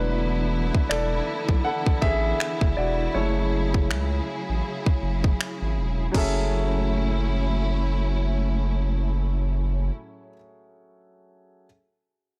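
A natural-toned concert grand piano takes the lead over lush, bowed studio strings with vibrato and a thick, saturated sub bass sitting up front, setting a longing, sensual contemporary R&B mood at 80 BPM in F# minor, with swung sixteenths and harmony moving from E7sus4 to F#m9. From 0.7 seconds a trap kit adds finger snaps, crash cymbal and a hard-clipped, tape-colored kick, dropping out at 6.3 seconds. The strings and bass fall away as the piano carries on to 11.7 seconds, all bathed in digital ambience, in a passage cut from a longer piece.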